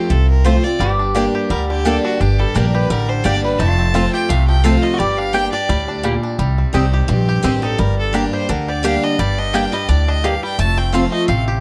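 A dry recording with little reverb carries this lonesome, rustic bluegrass excerpt in G minor at 172 BPM, swung on the eighths. A clear, bowed fiddle with light vibrato carries the melody alongside a twangy, percussive fingerpicked banjo. Beneath them, a bright picked parlour guitar with audible finger squeak and a woody, thumpy upright bass up front drive the accompaniment. Farther back sit a mellow, round mandolin adding stabs and a metallic, nasal slide resonator guitar, which plays a second line until 6.2 s, just before the harmony turns to C minor at 6.4 s.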